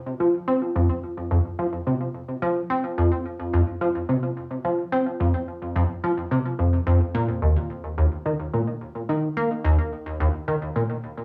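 A straight 4/4 pulse at 108 BPM carries this short, mysterious and expansive ambient fragment, cut from a longer piece, where a lone plucky analog bass plays from 0.2 to 10.8 seconds across a range of Eb2 to C4. Its punchy, funky tone blends sawtooth, pulse and triangle waves with ring modulation and a fast-attack filter pluck that decays, sitting up front under subtle chorus, cassette tape character and tape echo. The home cassette recording adds a small-room feel alongside a wet studio reverb, and the music moves into a new section at 7.4 seconds.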